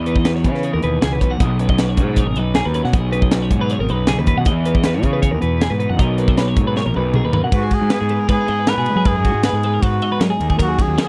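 Wistful and intricate, this math rock and midwest emo passage moves at 157 BPM in a straight 4/4, with two bright, twangy twelve-string electric guitars, one picking out chords through subtle chorus and the other tracing arpeggios in the background, over a growly, overdriven fingered bass and a crisp, airy fusion kit with a high-tuned snare and punchy kick. The chords drift from Emaj7 through B69 and Bmaj7, and after a drum fill at 6.8 seconds, a breathy, whispered trumpet with vibrato and slapback echo takes the melody at 7.5 seconds as the harmony shifts to G#m7 and D#m7. The sound is dry and close, like a 1970s studio recording, and the piece is cut from a longer work.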